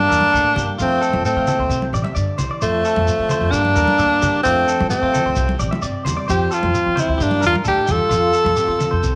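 Warm and joyful, this short cut from a longer highlife guitar band piece moves at a straight 131 BPM in F major, cycling through Gmadd9, F and Cadd9 chords. An up-front tenor saxophone carries the melody with light vibrato, scooped notes and a slapback echo, while a smooth-topped trombone plays a second line in the background, a twangy, compressed clean electric guitar picks arpeggios, and a dark, slightly broken-up guitar accompanies through spring reverb. A woody pizzicato upright bass anchors the groove beneath a grainy shekere and thin-skinned, hard-hand congas, all set in an echo chamber with a faint mains hum that lends a vintage feel.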